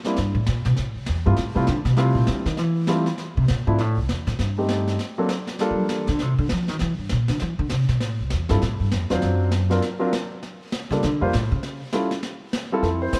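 Jazz piano trio in a relaxed, swinging mood, cut from a longer piece, where a woody, growly pizzicato upright bass sits up front and carries a solo through to 12.8 seconds, a natural-sounding grand piano plays the melody with a pause between 6.1 and 8.5 seconds, and a vintage brush kit with a punchy kick and rolled-off top adds brushed snare and hi-hat, all set in light reverb and studio ambience.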